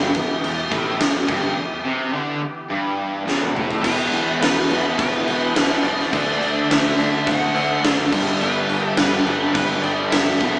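A straight 4/4 hard rock groove at 105 BPM in E minor drives this heavy, aggressive cut from a longer piece, with a big, up-front drum kit of punchy kick, fat snare, toms and crash ringing in a bright stone room, under a growly, bright picked bass and three riffing guitars: a very quiet compressed distorted one, a double-tracked overdriven one and a hollow-bodied semi-hollow with tremolo tucked in the background. A brassy, nasal sawtooth pad with chorus and vibrato holds very quiet sustained chords throughout, while a break from 1.6 s ends in a drum fill that sets up a dark, high-gain lead guitar melody entering at 3.8 s over a move from E5 through D to G. The band sounds as though it plays live in one room through moderate large studio reverb, with a small speaker character.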